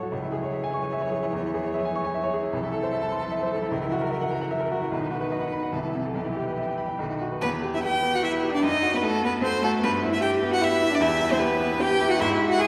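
A clear, up-front solo violin carries the melody with smooth, even vibrato in this quick classical-period movement for piano trio, cut from a longer piece. The mood is urgent and stormy, set in E minor at 150 BPM in 3/4 with a rubato feel, and tuned slightly low to A4 = 437 Hz. A single bowed cello adds a second line beneath with its own vibrato, while a baby grand piano, also up front, supplies the accompaniment with a natural tone and long sustain. All three play throughout, and the harmony moves from C#m through Am/C, F#7/C# and B before a second section begins at 7.4 s and settles around Em. The trio was recorded in a church or concert hall, and a wet church reverb with a 3.0 s decay surrounds the players with a resonant, spacious halo.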